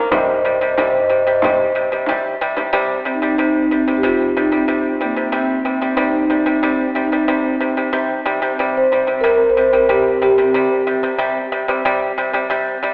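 In this windswept, solemn Mongolian folk fragment, a mellow, round soft-mallet marimba carries the melody over bright, dry, percussive pipa arpeggios played up front with fingerpicks, while a small, vintage-sounding frame drum played with soft hands joins only until 2.7 seconds. From then on, a very quiet, husky horsehead fiddle holds a bowed, woody drone, its dark tone shaded with vibrato and portamento beneath the straight 4/4 pulse. The recording has a telephone-filtered sound and sits in the wet reverb of a recital hall.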